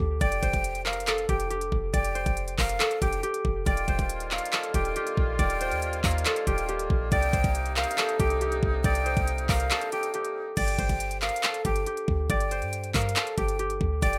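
A rough home-demo mix bathed in studio reverb carries this brooding, melancholic trap cut, taken from a longer piece and set in a half-time feel. Up front, a fingerpicked acoustic concert harp rings out the melody through a low-pass filter and delay, while a deep, boomy, clean 808-style bass with a dark sine tone and fast, decaying attack sits underneath. From 0.2 seconds a breathy metal jazz flute with lifted highs and a soft, straight tone adds an expressive second line, also touched with delay, alongside an electronic trap kit whose knocking kick, crisp hats, handclaps and crash cymbal are overdriven and re-recorded in a small room. A clear, close-miked woodwind section holds tight, classical-style sustained chords with vibrato from 3.7 to 10.5 seconds, moving from Ebadd9 to Cm7. A short break arrives at 9.7 seconds, overlapping the close of those chords, before the opening section returns on a G5 chord.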